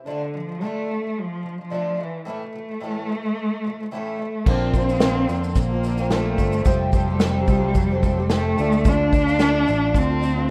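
A lightly swung 4/4 groove carries this wistful, tender acoustic pop excerpt, which opens on a boxy, shimmering, double-tracked twelve-string acoustic guitar and an expressive bowed cello melody rich in vibrato and portamento. At 4.5 seconds an unplugged drum kit arrives with punchy kick, snare, shaker and dark crash cymbal, joined by a warm fingered electric bass, while a very quiet, clear concert grand piano slips in just before. The rough home demo mix sits in a small room with light reverb.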